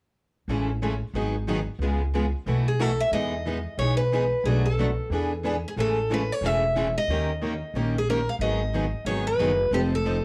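A swung 4/4 pulse at 182 BPM drives this lively, playful stretch of jazz manouche in E major, cut from a longer piece. Two picked steel-string acoustic guitars play accompaniment from 0.5 seconds, one bright and up front, the other with fresh strings and audible finger squeak. Beneath them an upright bass, played pizzicato on gut strings, sits up front with a woody, dark and thumpy tone. At 2.7 seconds a dreadnought guitar enters with the melody, ringing in a higher register just before the harmony moves into a new section at 3.1 seconds, where chords such as Emaj7, E7, D#7 and F7 pass by. Moderate studio reverb gives the group a modest glow, while a worn, warbling cassette-tape quality adds a warbly pitch drift to the sound.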